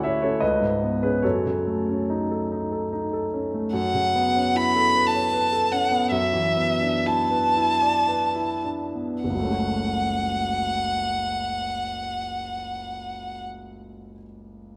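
Classical impressionist duo in F# minor and 3/4, hazy and wistful, moving with rubato between 50 and 81 BPM and slowing from 2.5 to 9.2 seconds in this fragment of a longer piece. A warm concert grand piano with deep bass sits up front as accompaniment throughout, drifting through chords such as F#m6, F#m7 and E9sus4/F#. At 3.7 seconds a single rich, expressive bowed violin enters up front with the high melody, its vibrato and portamento carried by a wet recital hall reverb.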